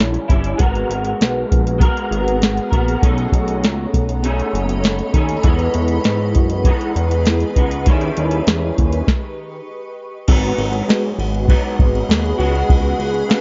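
Lonely and mellow, this short excerpt of indie bedroom pop moves at 99 BPM in a straight 4/4, set in G# minor. An electric guitar through a small old amp plays the accompaniment up front, its slightly broken-up, lo-fi tone treated with ensemble chorus and a warbly pitch drift, while a glossy, retro chorused synth bass with a plucked filter holds the low end. A soft vintage rhythm box, tape-warm with a deep kick, tonal snare and metallic hats, sits prominently, adding crash and ride cymbals. From 1.5 seconds a cloudy, blurred granular pad drifts in behind them with slow-attack chords and its own reverb. The harmony moves through jazzy chords like G#m9, B9 and Emaj7 before a stop at 9.1 seconds, after which a new section begins on G#m7 and closes on C#7sus4. Light digital ambience and a dark production with rounded highs give the whole piece a hazy, intimate feel.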